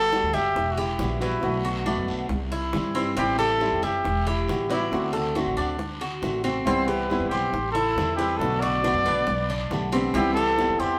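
A straight 4/4 pulse at 138 BPM drives this relaxed, danceable slice of Cuban son and guajira, cut from a longer piece and tuned to A4 = 445 Hz. Up front, a solo trumpet carries the melody with a punchy, pop-style tone and vibrato, moving between E4 and D5. Beneath it, a fingerpicked flamenco guitar lays down accompaniment, while a Cuban tres enters at 0.3 seconds with picked, metallic arpeggios on double strings, some doubled at the octave. The pizzicato upright bass is woody, dark and thumpy on gut strings. Round, low-tuned bongos played with hard hands sit close and dry in the background, and a raspy guiro sounds distant in a large room. The band plays live together in one studio with moderate reverb as the harmony moves through chords such as Gmaj7, Emadd9, D7 and Cmaj7.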